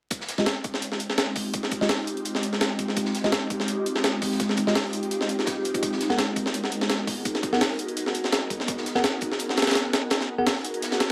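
Vinyl crackle and a small-room ambience with light reverb frame this short, frenetic drum and bass cut, which has a raw jungle edge and a slight swing on the sixteenths. An up-front, sampler-style breakbeat kit drives it from 0.1 seconds, compressed and gritty, with a thumpy kick, a high-tuned snare and hi-hats, its kick, snare and hats all high-passed and set in a small room reverb. Tucked far beneath, a very quiet acoustic breakbeat kit adds saturated, mid-forward hi-hat and snare with a rolled-off top and a medium-tuned snare. A bell-like tine electric piano plays bright, clean stabs roughened by vintage 12-bit sampler grain, low-pass filtering and dub echo, while a filter sweep runs across its whole part. The harmony moves from Fm9 to Abm9 at 5.8 seconds.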